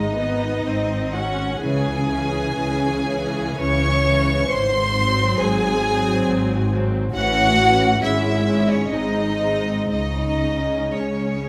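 A rich, up-front first violin section carries the melody between C#5 and C#6, its smooth, even bowing colored by vibrato, in this melancholic, yearning slow romantic movement for string orchestra in C# minor. The music moves in a rubato 3/4 at roughly 57-70 BPM, and this 11.5-second passage is cut from a longer piece. Beneath the lead, a second violin section plays an intimate second line with light vibrato, a soft attack and a sul tasto hush, while a lush, focused viola section fills in the accompaniment with a smooth top. A distant, even cello section and a close, expressive double bass section share the bass, both bowed with vibrato. The harmony turns through C#m, G#7 and A before settling on C#5 at 9.9 seconds, all set in a moderate concert hall reverb with a 1.9-second decay.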